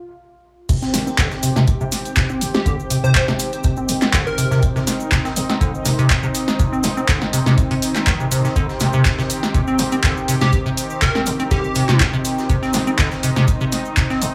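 A driving 122 BPM acid house groove in 4/4 with a light 16th-note swing drops in at 0.7 seconds on a C minor chord, as a deep tape-warm kick and a punchy, overdriven analog drum machine with crash, claps, hats and snare push up front over a gritty, very quiet sampled breakbeat kit and a grainy, dry cabasa, while a rubbery, saturated square-wave acid bass riff with a resonant filter sweep and tape echo winds hypnotically beneath a lush, warbling detuned sawtooth pad pumping with sidechain, and a catchy, plucky square-wave lead with digital delay appears at 2.5 and 10.4 seconds in a small, faintly humming room.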